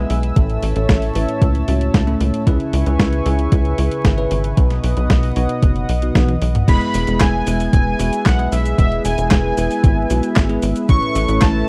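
A bold, brassy analog synth brass lead with chorus, tape echo and vibrato takes the melody at 6.7 seconds in this sunny, romantic italo disco cut at 114 BPM in E major, moving through A, C#m7 and B to E over a smooth, chorused analog pad, bright bell-like tine electric piano stabs through a phaser, a tight, punchy sawtooth sequencer bass, a thumpy overdriven electronic kick, and a clean 12-bit digital drum machine of overdriven snare, handclaps, hi-hat, cabasa, toms and crash with a fill from 6.2 seconds, heard in a dry, close 1970s-style recording with vinyl crackle.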